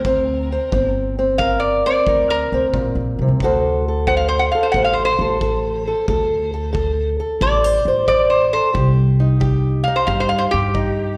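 Smoky and brooding, this short cut from a longer acoustic country blues piece moves at 90 BPM in 4/4 with a swung eighth-note feel, set in G minor and tuned slightly sharp at A4 = 441 Hz. A lap resonator guitar carries the melody up front, played with slide and fingerpicks, its tone metallic, nasal yet mellow, and touched with slapback echo. Beneath it, a fingerpicked old ladder-braced acoustic guitar supplies accompaniment with a dark, boxy, woody sound from old strings, also given slapback echo, while a pizzicato upright bass on gut strings adds a thumpy low end. A kick drum played with brushes sits lower in the mix, airy and punchy with a polished studio-room character, and drops out at 11.0 seconds just before the other parts end. The harmony moves from Gm to D7 at 3.4 seconds and on to Cm at 8.7 seconds, all heard as a live gig through the venue's PA with light recital hall reverb.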